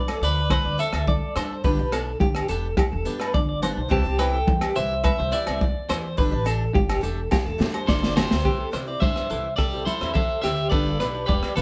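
Highlife guitar band in a carefree, warm mood, cut from a longer piece, with a slightly broken-up electric guitar carrying the melody up front while a bright, twangy clean electric guitar with tremolo plays arpeggios and takes a solo through the first 8.4 seconds. A woody, growly pizzicato upright bass and a crunchy, saturated breakbeat drum kit with a punchy kick and rolled-off top sit beneath, the kit playing a fill from 7.3 to 8.4 seconds as the music moves into a new section. A boxy, picked swing-style acoustic guitar adds accompaniment, while thin-skinned vintage congas and ringing agogo bells sit in the background, the bells dropping out at 8.3 seconds, all heard as a band playing live in one room with light reverb.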